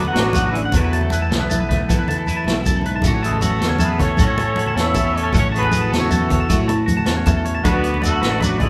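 Recorded as a band playing live in one room, this short excerpt has a lush studio reverb and faint lossy compression artefacts, and carries a sunny highlife guitar-band mood in 12/8 at 104 BPM in A major. A tight, vintage horn section with light vibrato and octave doubling sits up front with the melody, while a bright, compressed clean electric guitar with phaser supplies twangy accompaniment and a slightly broken-up second guitar with spring reverb picks high arpeggios. Underneath, a fingered electric bass, hard-handed congas in the background, a grainy shekere from 0.3 seconds and a punchy vintage drum kit from 0.2 seconds, with a fill at 2.3 seconds, move through D6, Esus4 and A6.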